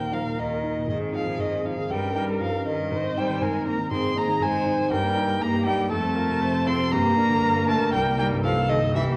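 A lively, graceful classical-period piano quartet passage, cut from a longer movement, opens with an up-front violin singing a rich, smooth, even melody with vibrato over a dark, mellow concert grand with audible action noise and deep bass, while a distant, expressive viola adds soft-attacked accompaniment with portamento and a clear cello enters at 0.1 seconds with a smooth, even second line, the ensemble sitting in a wet recital-hall reverb and the warbling pitch drift of worn old cassette tape.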